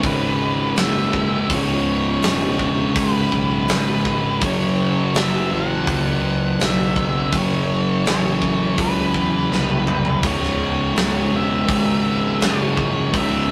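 A thick, double-tracked fuzz guitar riff sits up front from the start, grinding low at 82 BPM in C# minor while a dark octave-fuzz lead guitar carries the melody above it, giving this short stoner and doom metal excerpt an ominous, sludgy weight. Underneath, a bright, growly overdriven fingered bass and a big rock drum kit with a tight kick and medium-tuned snare fill out the rough rehearsal-room sound, colored by tube saturation and light reverb. The chords move from C#m to F#m at 4.4 seconds, and a drum fill at 9.5 seconds leads back to C#m at 10.2 seconds.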